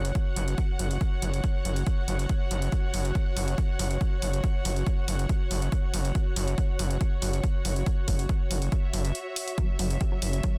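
A dense, heavily limited modern master with little reverb gives this brief cut from a longer piece of driving peak-time techno an intense, relentless feel. Up front, a gritty, aggressive synth bass built from sawtooth, sine and triangle tones with oscillator sync and detuning opens the cut, its filter pluck and tube saturation pushing it hard while sidechain pumping makes it breathe around a punchy, dry electronic kick with overdrive that arrives at 0.2 seconds. An overdriven analog hi-hat, also pumping from the sidechain, sits lower in the mix. Above them, a dark, woody studio string section plays as a bowed ensemble texture with soft attack and light vibrato, pulsing with the same pumping effect. After a short break at 9.2 seconds, a tight sequenced sawtooth synth riff slips in at 9.6 seconds in the background, colored by chorus and digital delay.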